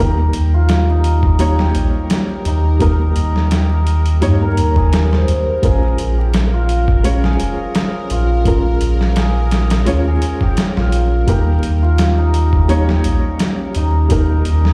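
Vinyl crackle and large studio reverb wash over this dark, cinematic trip hop excerpt, which sounds as if played on a big sound system in a bare room, moving at 85 BPM with a light 16th-note swing over Eb and Bbm7 chords. Up front, a gritty, overdriven sampler-style drum kit with a thumpy kick joins at 0.3 seconds, while a deep, round sub bass with tube saturation anchors the low end. A shimmering, ringing cimbalom carries the melody through dub echo over a boxy, felt-muted upright piano with audible action noise, tremolo and tape echo; a tense, string-like drone with phaser sits in the background from 1.2 seconds, and a very quiet, warbling, nostalgic pad arrives at 12.3 seconds.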